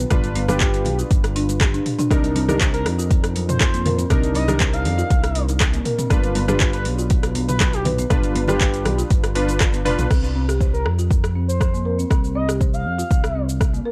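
An overdriven, up-front electronic kick drives this warm, hypnotic afro house excerpt at 120 BPM in C minor, joined by a deep house kit with metallic hats and cabasa, very quiet close-miked congas, and a smooth sawtooth synth bass with vibrato under sidechain pumping. Woody, rustic soft-mallet marimba arpeggios and detuned analog key stabs with chorus and 12-bit sampler grit float in tape echo, and from 0.5 s a mellow portamento lead sings through lush chorus. The keys and congas stop at 10.1 s, as the dry, gritty, cassette-toned mix moves from G7 and Cm7 to a bare C5.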